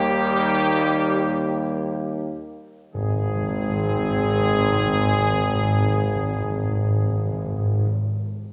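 A wet, reverberant church or concert-hall sound surrounds this brief, triumphant and regal classical fanfare in Ab major, played at a slow 50-69 BPM in 3/4 and slowing through its opening bars as an Eb chord resolves to Ab at 2.9 seconds. An up-front, mellow trumpet section carries the melody with light vibrato and a soft attack, while French horns and trombones hold sustained chords in the background and a clear tuba anchors the bass. From 2.9 seconds, timpani struck with soft mallets add a round calf-head resonance up front, heard in this short cut from a longer piece.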